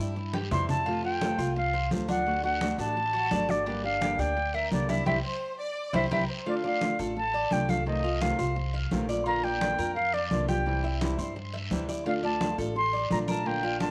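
An airy, reedy flute carries the melody up front from 0.5 s in this danceable, warm Cuban son and guajira excerpt, over a fingerpicked nylon-string guitar, mellow arpeggios from a metallic, double-strung tres, woody pizzicato upright bass, bright hard-hand congas and a raspy guiro, with a lush bowed violin section adding a brief second line from 5.2 to 6.5 s, all in a light reverb.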